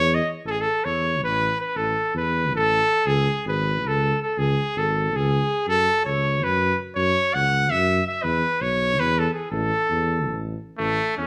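A wet stone room gives this live, one-room recording about a second of reverb, with trumpet and tuba both placed up front. It is a virtuosic, exuberant Balkan folk piece in A major and 7/8 time with a straight feel, moving at 326 eighth-note beats per minute and speeding up across the whole 11.3 seconds of this cut from a longer piece. A clear trumpet carries the melody in a classical style, its smooth top ringing from A3 up to F#5. Beneath it, a dark tuba holds the bass from G#1 to F#2 with a punchy, classical-style attack. The chords move from A5 through C#5, F#5 and E5 before returning to A5 across the single section.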